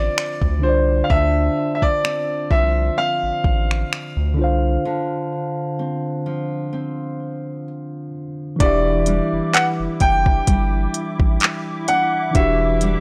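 A slow 64 BPM groove with a light 16th-note swing sets a sensual, late-night contemporary R&B mood, its electronic kit of soft kick, handclaps, finger snaps and smooth hi-hat sitting up front beside a deep, round analog bass. Over Dm9, a boxy grand piano carries the melody through tape echo, backed by a mellow tine electric piano and fingerpicked nylon-string guitar arpeggios with fresh strings, before a break at 4.8 seconds. At 8.6 seconds the harmony moves to Em9 as a hollow, flute-like pad enters with ensemble chorus and sidechain pumping, and from 9.5 seconds a delicate, bell-like celesta glints in the background, all in a small, dry, gritty room.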